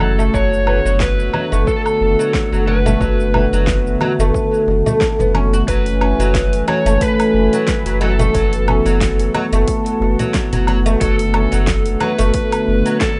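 A lightly swung sixteenth-note groove at 90 BPM in 4/4 drives this earthy, meditative organic downtempo piece. A punchy electronic kick arrives at 0.3 seconds beneath a layered deep house kit of hi-hat, shaker, fat snare and woodblock, while bright, close congas and bongos sit in the background until 12.2 seconds. A round sine sub bass holds F#1 up front with sidechain pumping, under a smooth, detuned vintage analog pad that warbles with chorus and pumps as well. An oud plays woody, plectrum-plucked arpeggios on doubled strings, softened by a low-pass filter and tape echo, and an overdriven electric slide guitar played with fingerpicks carries the melody through its own tape echo. The chords move from Bm7/F# to F#m7 and back, all set in digital ambience within a rough home-demo mix with a dull top end, in a fragment cut from a longer piece.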